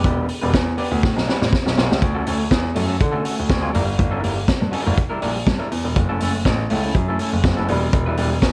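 Disco at 122 BPM in straight 4/4 and D major, this short piece cut from a longer track feels glamorous and joyful. A vintage acoustic drum kit sits up front with a punchy kick, a high-tuned snare and hi-hat, its top rolled off, and a fill from 1.0 to 2.0 seconds carries the music into its next section at 2.0 seconds. A baby grand piano takes the bass role in its low register, with a natural, short-sustained tone that also sits forward in the mix. A fingered electric guitar through a small old amp fills out the accompaniment, sounding twangy, slightly broken-up and compressed, with a subtle chorus. The chords move from Em7 and A13 into Dmaj7, Gm6 and F#m7 before returning to Em7, all wrapped in a dark, warm studio ambience.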